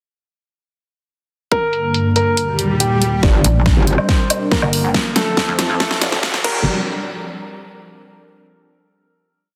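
Heavy, aggressive wobble dubstep in G minor at 140 BPM with a half-time feel. From 1.5 seconds a warm concert grand piano repeats a riff in octaves over a lush, warbling detuned unison pad, while a punchy electronic kick and a dubstep kit with a huge snare, hi-hats, woodblock and crash drive the beat, with filter sweeps and, from 2.5 seconds, a background swell and riser. At 3.2 seconds a metallic, distorted FM wobble bass arrives up front, joined by a pulsing, saturated pluck wobble bass answering it, as a drum fill and filter sweeps push the build toward a final hit at 6.7 seconds, all set in a moderate hall reverb and a dense, heavily limited master.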